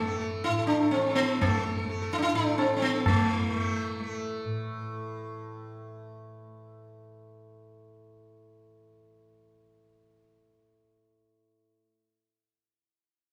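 Longing and solemn, this short Hindustani classical fragment in raga Bhimpalasi gathers pace as a round, shimmering, plectrum-plucked sitar sits up front with the ring of its sympathetic strings, while a high-tuned, close, dry tabla with a short ring joins at 0.5 seconds and drops out at 3.2 seconds, the sitar falls silent at 6.4 seconds, and a mellow, softly plucked, buzzing tanpura drone carries on beneath a recital-hall reverb.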